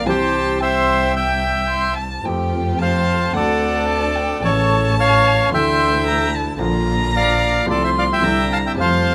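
Nostalgic and elegant, this brief tango fragment unfolds with a loose, rubato feel in four. A reedy, airy bandoneon sits up front carrying the melody, while a dark solo violin traces a bowed second line above it with vibrato, gentle portamento and a smooth top. An intimate concert grand supplies the accompaniment, its deep bass and audible action noise lending a natural closeness, and a bowed double bass joins at 0.1 s with a soft attack, vibrato and expressive slides. From 2.3 s a lush, focused studio string section adds bowed stabs in the background, its vibrato giving them a rich sheen. The harmony drifts from C through Fadd9, D7 and Bb before settling on Cadd9, all set in a moderate room ambience.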